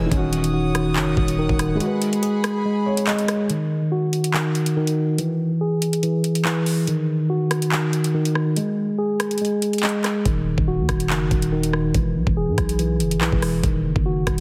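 Cold, ominous drill hip hop at 142 BPM in a half-time feel, set in Eb phrygian, this excerpt opens with a soft, felt-muted upright piano, boxy and intimate with audible action noise, and a reedy chamber string section with light vibrato holding sustained chords, while a mellow, clean tine electric piano plays filtered, delayed arpeggios up front throughout. The drill kit brings metallic hats, handclaps, rim clicks and a knocking kick. A growling, buzzy 808-style bass sounds from the start, with the kick entering just after, and both drop out at 1.8 seconds until the bass and kick return at 10.3 seconds; the piano and strings fall away at 3.5 seconds as a filter sweep takes hold, all within lush hall reverb and a heavily compressed, radio-like sound.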